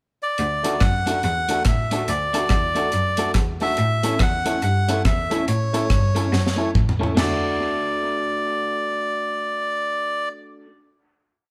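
A reedy, breathy melodica opens this cheerful ska piece at 142 BPM in D major, joined at 0.4 s by a dry, up-front reggae drum kit with its side-stick backbeat and a biting, distant bowed cello walking the bass, while a slightly broken-up guitar chop plays the off-beats and a woody upright piano chop sits in the background of a moderate studio room, until a drum fill at 6.3 s leads to a held final chord.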